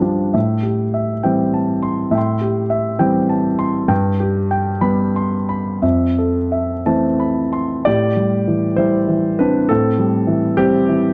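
Intimate and reflective, this short passage of neoclassical minimalist piano is cut from a longer piece and moves at a rubato 58-70 BPM in 6/8, set in A minor. A solo concert grand piano carries everything, spanning F2 to C6 with a warm tone, deep bass and short sustain, placed up front in the mix. The harmony drifts from Am7 through G and Fmaj7, then returns to Am7 at 7.9 seconds as a new section opens and runs to the close at 11.1 seconds. A moderate spring reverb and studio ambience surround the instrument. The cassette tape recording lends the whole a homespun, private character.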